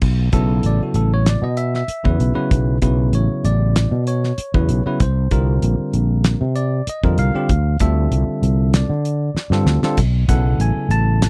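A growly, amped fretless electric bass and a damped 1970s drum kit with a fat snare, tight kick and dark cymbals open this slick, intense electric jazz fusion excerpt, joined at 0.3 seconds by a bright, bell-like tine electric piano. The harmony moves from Bm9 through Csus2 and Dm9 to Bsus2, with the bass sustaining underneath while the drums play a fill from 9.4 to 10.0 seconds. The sound is dry and close, with all three parts placed up front in a 1970s-style studio recording.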